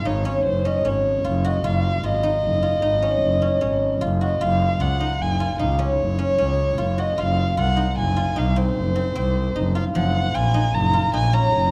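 Contemporary chamber music in an uneven 7/4 at 152 BPM in Gb lydian, tuned to A4 = 435 Hz, this hopeful, restless passage cut from a longer piece sets a close, woody violin melody, bowed sul tasto with vibrato and up front, over ringing, silvery guzheng arpeggios played with fingerpicks and a focused, bright bowed double bass line with vibrato, all moving through Dbadd9/Gb, Gb5, F7(no3)/Gb and Ebm11/Gb within a moderate concert hall reverb and a dark, warm production.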